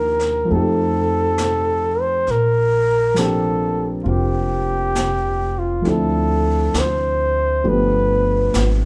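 This short cut from a longer jazz ballad has a live-in-one-room sound with light reverb, the band heard together in a single space. At a slow 67 BPM in 4/4 with a gentle swing on the eighths, the mood is romantic and intimate. A breathy, close-miked flugelhorn carries the melody up front between F4 and C5, its dark tone touched with vibrato and a punchy attack. Beneath it, a dark, mellow concert grand gives accompaniment with a deep low end, while a woody pizzicato upright bass with steel strings sits forward in the mix. A brushed drum kit, entering at 0.2 seconds, adds a soft, natural snare and hi-hat further back. The harmony moves through F7, Bb69, Dm7 and G9 across the roughly nine seconds.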